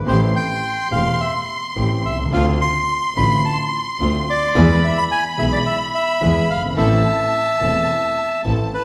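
Tango in A minor at 107 BPM with a rubato feel, this sultry, dramatic excerpt is cut from a longer piece and unfolds over Am7, Dm7, E and Am in a resonant hall. A reedy, dark bandoneon carries the melody up front, while a bright, distant violin section adds a lush bowed second line and a clear, very quiet symphonic string section supplies focused stabs. Beneath them, a warm concert grand piano with audible action noise and deep bass plays accompaniment, and a biting, close bowed double bass with vibrato anchors the low end.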